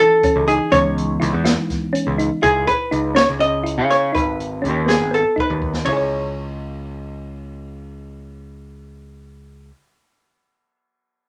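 Tense and driving, this short progressive instrumental excerpt in 7/8 at 245 BPM in C# minor puts a dark, hollow-bodied archtop guitar melody up front over a growly overdriven picked bass, a chorused thumb-piano-like synth pluck spinning round, tine-like arpeggios, a mellow electric piano that drops out at 2.4 seconds, and an open jazz kit with dark cymbals and a boomy kick that plays a fill from 5.4 seconds and stops at 6.0 seconds, all set in a moderate studio reverb.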